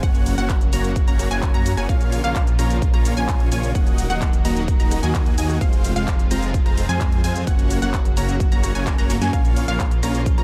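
Euphoric and powerful, this festival progressive house excerpt drives at 129 BPM in Bb minor, cycling through Gb, Bbm, Ebm and Fm as a punchy, up-front electronic kick anchors a layered dance kit of snare, handclaps, hi-hat, rim click and shaker that breaks into a drum fill at 8.9 seconds. A huge, dense compressed supersaw carries the riff with analog delay, while a menacing, saturated detuned saw bass beats underneath and a bright unison pluck spins arpeggios through chorus and delay. Behind them a warbling, vintage unison pad holds sustained chords in the background. All of the synths pump with sidechain, and light reverb sits over the whole mix.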